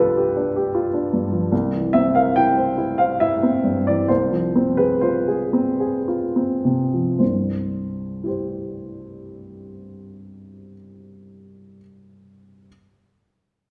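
A woody, polished upright piano rings through a wet recital hall reverb, heard from further back in the room, in this passionate, hopeful excerpt of a romantic classical character piece. Playing alone in 3/4 and C major with free rubato between 50-78 BPM, the piano spans C2 to G5 and moves through G7/C, C7 and Fm/C harmonies. It slows down from 0.4 to 7.2 seconds, where it settles onto a C major chord as a new section begins.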